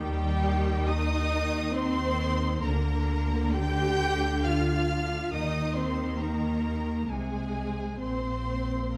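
Classical slow romantic movement for string orchestra in 3/4, lyrical and serene, cut from a longer piece and shaped with flexible rubato. The first violins carry the melody up high with a smooth, lightly vibrato tone, while darker second violins and close, lush violas add expressive vibrato and portamento beneath them. Even, smooth-topped cellos and up-front double basses with portamento anchor the bass, all five sections sounding together across the nine seconds in a moderate recital hall reverb.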